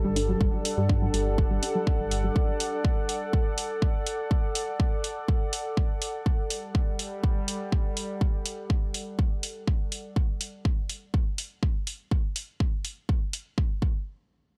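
Dramatic and driving, this melodic techno excerpt at 123 BPM opens on a D/G chord with a dark, rumbling detuned saw bass with tube saturation and a soft, round pluck arpeggio through analog delay, both under filter sweeps until 2.3 seconds, while a resonant, wave-folded pad sweeps through phaser to 6.2 seconds and a warbling, lo-fi tape-like pad with built-in reverb lingers to 10.2 seconds, all four pumping against a punchy, up-front electronic kick and analog hi-hat that carry on through a dry, gritty mix, the hi-hat until 13.4 seconds and the kick until 13.9 seconds.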